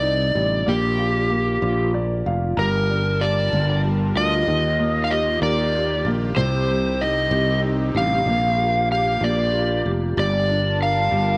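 A dark, overdriven slide guitar leads this melancholic, dramatic pop ballad in six-eight at 63 BPM, carrying the melody up front between G4 and F5 over a woody, vintage-toned upright piano and a growly fretless electric bass. The piano supplies the accompaniment across a broad span from C3 to F5, with a short fill at 1.6 seconds, while the bass sits bright and direct in the low register, sustaining under the harmony. At 2.8 seconds an airy, breathy pad fades in behind the band, its soft, detuned sawtooth and triangle tones warbling through a chorus effect with a faint noise layer and a long release. The harmony moves through a moody minor progression, from Cmadd9 and Bb5 to Gm7, Ebmaj7, Cm and Bb6 before returning to Gm7. A light reverb gives the mix a gentle sense of space, and this short passage is cut from a longer piece.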